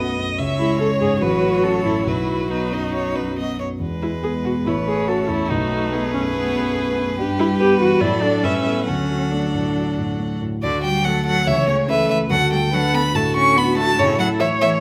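Heard through close, detailed microphones in a recital hall with moderate reverb, this graceful, cheerful excerpt from a quick classical-period piano quintet movement at 142 BPM in 4/4, played with rubato and settling into D major from 7.2 s, features an up-front clear violin singing the melody with smooth, even vibrato over a dark, mellow concert grand with deep bass and short sustain, an expressive viola whose soft attack and portamento add shading, a more distant rich-toned second violin, and a cello sitting in the background, the strings each bowed by single players across its nearly 15 seconds.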